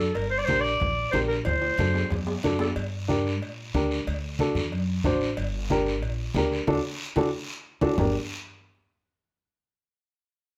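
A driving, danceable cumbia excerpt moves at 184 BPM in 4/4 with a straight feel, set in G harmonic minor and cut from a longer piece. A soft-attacked, classical-style clarinet sits up front but sounds distant and roomy, carrying the melody only until 2.7 seconds, while a dark, mellow upright piano with short sustain holds the accompaniment throughout. Beneath it, a woody pizzicato upright bass with steel strings anchors the low end, joined by low-tuned congas with thick skins struck by hard hands, a ringing metal-shelled cowbell and timbales in a live room, and a raspy guiro heard from a large, distant space. The harmony cycles between Gm and D7, turning to a plain D chord near the end, with a band accent from 6.7 seconds and a drum fill from 7.2 seconds pushing back toward Gm at 8.0 seconds. The recording is close and detailed, with light reverb.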